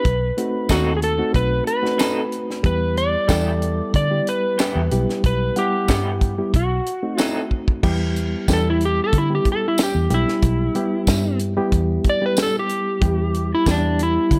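Straight-eighth soul blues in E minor at 92 BPM, this smoky, mournful excerpt is cut from a longer piece and moves between B7b9 and Em. A dark, slightly broken-up slide guitar sits up front carrying the melody. Beneath it are a reedy electric piano with light overdrive and harmonic tremolo, a round, foam-muted vintage bass, and a tight, natural-sounding small-room funk kit with a high-tuned snare, hi-hat, crash and tambourine, while a bright, twangy, lo-fi guitar through a small old amp adds picked tremolo stabs from 0.7 to 7.4 seconds. A brief drum fill leads into a slide guitar solo at 7.8 seconds, all set in studio ambience.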